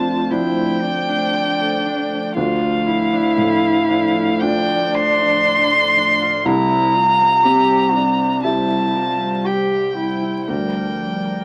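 A muted solo violin carries the melancholic, longing melody up front, its veiled tone shaded with vibrato and portamento, while a close, dark-toned muted cello sings a second line beneath it in this rubato neoclassical piece for piano and strings. An intimate baby grand piano, its action noise audible, provides the accompaniment, with a hollow, chorused pad holding soft sustained chords and a bright concert harp ringing out arpeggios in the background. Moderate studio reverb and a layer of vinyl crackle surround the 11.4-second excerpt as the harmony moves from Dm7 to C7 at 6.5 seconds and settles on Bb6/D.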